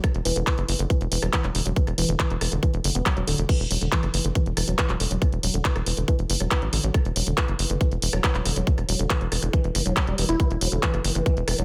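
Psychedelic trance with a hypnotic, straight 4/4 drive, built on a tight electronic kick sitting up front, a punchy, sawtooth-edged sequencer bass from 0.1 s, a layered electronic kit of crash, handclaps, hi-hat and rim click, and a woody, wave-folded pluck riff treated with chorus, delay and sidechain pumping, all in a light reverb.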